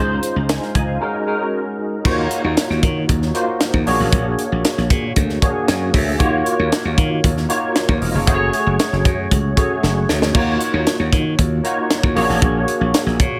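Polished 1980s jazz-funk pop with an urban, breezy mood, this short cut from a longer piece moves in a straight 4/4 groove. A barky tine electric piano, bright and clean through a combo amp with an ensemble chorus, carries the harmony from Dbmaj9 and Ab9sus4 into a section built on Ebm9, Bb7alt and Gbmadd9, and adds a brief fill around 5.4 seconds. Up front beside it, a growly, punchy slap bass sounds direct and amped. The crisp fusion drum kit enters at 0.2 seconds with crash cymbal, hi-hat, a punchy kick and a high-tuned snare, its small, pumping room giving the kit a lively push, and it plays a fill at 9.8 seconds. Light reverb rounds out a polished, forward mix.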